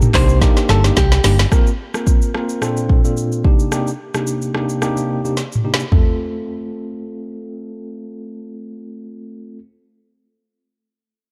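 Dark, warm production with light reverb and a digital ambience frames this sunny, breezy afrobeats excerpt in 4/4, carried by a lightly swung sixteenth-note feel. An electronic afro-pop kit sits up front with a deep kick, woody snare and crisp hi-hats, plus handclaps, rim click, shaker and toms, all with a tape-warm character from being re-recorded in a small room, and it throws in drum fills along the way. A hollow-body short-scale electric bass, fingered and amped, adds a round, punchy low end, and a bright, direct-recorded electric guitar picks a short, compressed melody; both appear only in the opening moments, ending by 1.4 seconds. A tine electric piano, clean and heard through its built-in speakers, holds the accompaniment up front across the whole clip, moving through Cm7, Fsus4, Bbmaj7 and Cm7 before landing on F at 5.9 seconds. The drums stop at 6.1 seconds, leaving the electric piano to play on alone.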